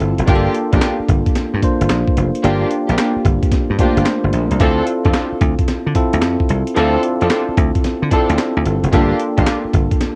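A dry, thumbed slap bass anchors this slick, bouncy new jack swing R&B clip, sitting up front with a bright, punchy, foam-muted electric tone across the full 10 seconds. Beside it, a gritty, compressed breakbeat sampler-style kit of thumpy kick, medium-tuned snare, hi-hat and handclaps drives a 111 BPM groove in 4/4 with a strong sixteenth-note swing, its sound colored by cassette tape and re-recorded in a small room. A clean, bell-like tine electric piano carries the accompaniment, also touched by cassette tape, over a Gm7 to Dm7 and back to Gm7 progression. From 0.3 seconds, a studio string section adds bowed ensemble stabs with vibrato, portamento and a smooth top, treated with cassette tape and analog delay, until 9.5 seconds. Light reverb and the homespun cassette recording give this fragment of a longer piece a tape-worn sheen.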